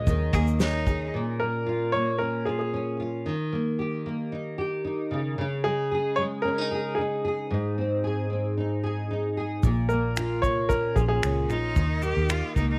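This acoustic pop piece at 113 BPM in 4/4 has a straight feel and a tender, reflective mood, and is cut from a longer piece. An up-front upright piano carries the melody with a woody, intimate tone, audible action noise and long sustain. A double-tracked, fingerpicked nylon-string guitar with fresh strings and a deep classical body supplies the accompaniment throughout. A dark, foam-muted vintage electric bass, round and punchy, and an unplugged small-room kit played with bundle sticks (tight kick, medium-tuned snare, shaker and finger snaps) appear briefly at the opening and return from 9.6 s. A bowed cello, biting and intense with vibrato, adds a second line at the start and again once the piano stops at 11.5 s. The harmony moves from Eb7sus4 through Bbm, Eb, Dbsus2 and Ab, set in light reverb.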